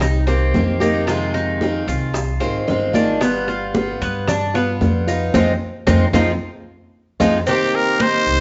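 Nostalgic and danceable, this brief cut from a longer Cuban son and guajira piece in 4/4 sets a mellow, metallic tres playing arpeggios over a boxy parlour steel-string guitar and a woody pizzicato upright bass up front, with damped high-tuned congas, round saturated bongos and cowbell, and grainy maracas in the background, all in one live room with a wet large-studio reverb, arriving at a band accent from 5.3 seconds and a drum fill before a raspy, growling trumpet with scooped notes and vibrato bursts in at 7.5 seconds.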